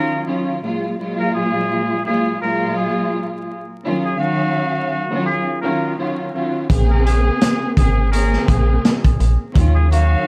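A swung boom-bap groove takes hold at 6.7 seconds, when a crunchy, gritty breakbeat kit with a tight kick and a metallic, digital FM bass arrive up front, joined from 7.0 seconds by very quiet, punchy stabs from a trumpet section. Before that, this moody, reflective hip-hop excerpt opens on lush, bowed studio strings with vibrato and a cassette-tape color, while a distant, nasal muted trumpet plays a breathy, jazz-style melody with scooped notes through an analog delay. The small-room production is dark and carries a layer of vinyl crackle over minor and major ninth chords.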